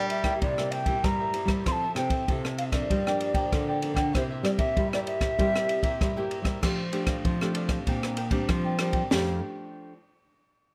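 A sunny, joyful samba and choro fragment at 97 BPM in F major, where an airy, hollow wooden flute carries the melody with vibrato and tongued notes until 6.3 seconds, close-miked. Underneath, a bright fingerpicked nylon-string guitar and a crisp, picked cavaquinho sitting in the background supply the accompaniment, while a second nylon-string guitar, thumb-plucked with fresh strings, plays the bass line. An open jazz drum kit sits up front with dark cymbals, a high-tuned snare, a boomy kick and rim clicks in a small room, with light reverb as the harmony moves from C7, Fmaj7 and Gm7 to F69 at 6.6 seconds and Bb69 at 7.9 seconds.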